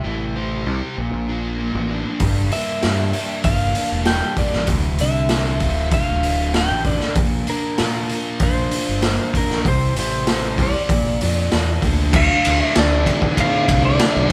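Boomy, saturated garage drums sit up front from 2.2 seconds in this swaggering, gritty classic rock excerpt in D minor at 97 BPM, driving a straight 4/4 under two overdriven electric guitars, one of them sludgy and set back, that play a picked riff over a growly fuzz bass, while a dark, clean lap steel enters at 2.5 seconds with slide, volume swells and slapback echo as the band plays live in one room.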